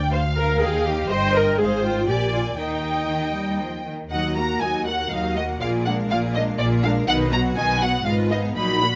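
Close, detailed microphones and light reverb frame this brief excerpt from a quick, cheerful classical-period movement for string orchestra at 121 BPM in 3/4, opening in Eb major and darkening to Eb minor at 4.1 s. Up front, a smooth-topped first violin section carries the melody, smooth and even with vibrato, while the violas supply accompaniment from 0.1 s, and a focused second violin section adds a second line. Lush, expressive cellos with soft attacks combine with a rich double bass section to anchor the bass, passing through chords such as Bb7, B and Fm7b5/Ab.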